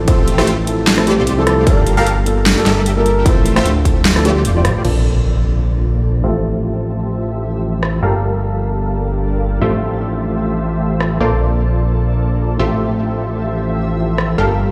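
Future bass, playful and lush, cut from a longer piece, opens on a drop where a punchy electronic kick and a big-room dance kit with a huge snare and metallic hats drive a fat, detuned analog bass, punchy supersaw stabs with tape echo, a soft octave-layered synth lead and a muted, boxy felt piano, the bass, stabs, lead and piano all pumping under sidechain, until an impact at 4.8 seconds ushers in a shimmering, ethereal pad as filter sweeps move across the supersaw and pad while the kit returns only in brief hits.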